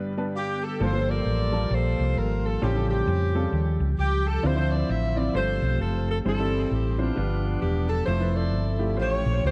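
A small, lightly reverberant room and an echo-heavy mix give this gospel passage a close yet lingering sound, and its mood is uplifting and reverent over swung eighth notes in 4/4. It is cut from a longer piece and opens with a short grand piano fill. The warm, natural baby grand then settles into accompaniment beside a soft, flute-like tonewheel organ that sits in the background, holding sustained chords with a clean key click and the vibrato of a fast rotary speaker. A tight saxophone section carries the melody from 0.4 seconds, its dark, jazz-style tone up front with light vibrato and a trail of tape echo. At 0.8 seconds a fingered hollow-body electric bass joins, round, punchy and prominent in the mix. The harmony moves through rich extended chords such as Gm9, A7alt, G9sus4 and Fmaj7 before resting on A7b13.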